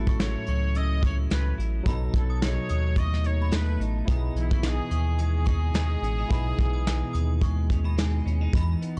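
A clear, punchy trumpet carries the melody in this dreamy, nostalgic bedroom-pop excerpt, its scooped notes colored by analog chorus and tape echo before it drops out at 7.9 seconds. The indie-pop groove moves at 108 BPM in 4/4 with a light 16th-note swing in E major, passing through A6, B7 and Emaj7 chords. A soft brush drum kit with a punchy kick sits up front beside a round, deep analog bass touched by transformer saturation, while a clean, twangy electric guitar shimmers through lush chorus and a warbly pitch drift. A barky tine electric piano, lightly overdriven and tinted by cassette tape, fills out the accompaniment, and an inharmonic FM synth chime rings in the background with phaser and ensemble chorus. The small room sound is dry and gritty with a muted top end, and the drums carry a vintage 12-bit sampler grit.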